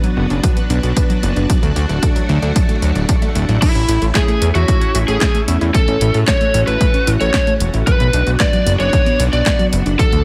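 Danceable and romantic, this italo disco passage opens on a house-kit drum fill of punchy snare, handclaps and toms over lush, chorused string-machine chords and detuned sawtooth pluck arpeggios echoing through digital delay in the background; a fat, tube-saturated analog bass and an up-front, tape-warm electronic kick join at 0.2 and 0.4 seconds, and an overdriven lead guitar through a small cranked amp takes the melody at 3.6 seconds, set in a light digital ambience.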